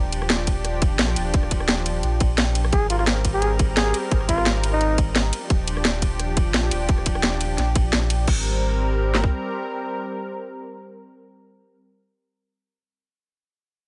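Two layered, overdriven electronic drum kits drive this dreamy liquid drum and bass cut at 173 BPM, with a light swing on the 16ths: one brings a tight kick and cracking snare and stops at 9.3 seconds, while the other adds bright hats, ride, crash, rim clicks and more snare, both sitting up front. Beneath them, a deep sine-and-triangle sub bass with an octave layer holds the low end, and a lush, detuned sawtooth unison pad with chorus and sidechain pumping sustains Ebmaj9 and Abmaj9 chords in Ab lydian. From 2.7 to 5.0 seconds, a bucket-muted trumpet plays a brief jazz-style solo, veiled and growling with scooped notes and vibrato and trailed by delay, inside a digital ambience that rolls off above 10.6 kHz.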